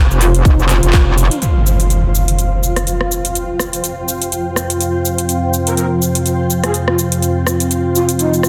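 A metallic wobble bass opens this swaggering, aggressive bass house fragment at 124 BPM, bright and saturated up front with chorus and sidechain pumping, alongside a cloudy, blurred granular pad that drifts high behind it with its own reverb. A big-room dance kit of handclaps, metallic hi-hats, rim clicks and shaker sets a swung 4/4 groove, and a tight electronic kick punches in briefly between 0.5 and 1.0 seconds, with a band accent at 0.9. A soft, breathy flute-like lead with vibrato, chorus and delay floats over the opening, then the bass drops out as an electronic impact hits at 1.4 seconds. From 3.8 seconds a deep, moody analog pad carries sustained chords under a filter sweep, its phaser and chorus giving it a dark, pulsing weight. The flute-like lead returns over the pad and evolving granular cloud, all set in light digital ambience within a dense, heavily limited modern master.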